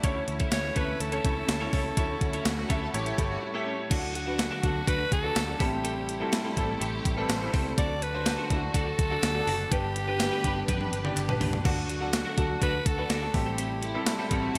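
1980s-style pop with a romantic, uplifting mood, this cut from a longer piece opens on a clear grand piano with analog chorus, lush bowed strings in the background, a bright, twangy twelve-string electric guitar riff through ensemble chorus and digital delay, and a dark, round, foam-muted picked bass. An up-front, overdriven 12-bit drum machine with a thumpy kick and gated reverb drives the groove, pausing for a break at 3.4 s and adding a drum fill at 10.7 s, while barely audible crisp handclaps sit underneath. A raspy, gritty, close-miked alto saxophone carries the melody from 0.5 s, joined by a smooth, even violin section on a second line from 2.2 s, all set in a bright digital production with a lush hall reverb.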